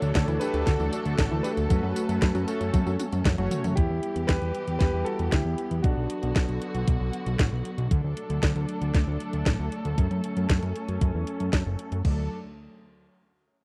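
This dry, close recording has a 1970s studio sound, with a digital ambience around it. It is a sunny, romantic italo disco passage cut from a longer piece, in a straight four-four pulse. An overdriven, thumpy drum machine kick and crash sit up front, beside a house drum kit with a cracking snare, hi-hat, tambourine and toms, and a drum fill arrives at 2.7 seconds. A fat, saturated, detuned analog bass holds the low end throughout, and a dark chamber string section sustains smooth, bowed chords under a low-pass filter. A warm, clangy electric grand piano carries the melody through a tape echo until 6.8 seconds. Early on, a round, chorused analog pluck plays gritty arpeggios in the background, and bold, warbling synth brass stabs in with a cassette tape tint, both dropping out by 3.8 seconds.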